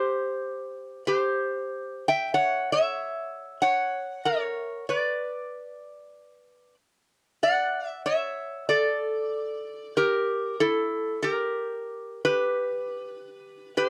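This is a dry, close recording in a 1970s studio style, with little reverb, so the guitar sits up front and intimate. It is a short Hawaiian-flavoured cut from a longer piece, relaxed and languid, with a gentle swing in 4/4. A lone acoustic metal-body resonator slide guitar carries everything. It is played with fingerpicks and has a warm, metallic, nasal voice, staying between E4 and G5. The opening passage moves through C5 and F# harmonies before the chords drop away at 4.9 seconds. From 7.4 seconds a new section settles into a Dmaj7, then a Gm6, and moves to G at 12.5 seconds.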